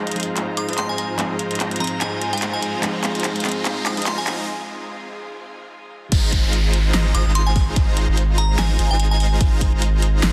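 A deep, saturated sub bass and a punchy electronic kick arrive up front at the 6.1 s drop in this euphoric, playful future bass cut at 146 BPM in Ab major, with a half-time feel and swung 16ths, after a build-up in which huge, detuned supersaw chords pump and open through a filter sweep over glassy digital keys with tape echo, a clear bowed string section sits in the background, a crystalline FM synth bell carries the melody, a pop drum kit with a fat snare, handclaps and crash drives a fill, and a riser and downlifter hover behind it all, all under a dense, heavily limited master with light reverb.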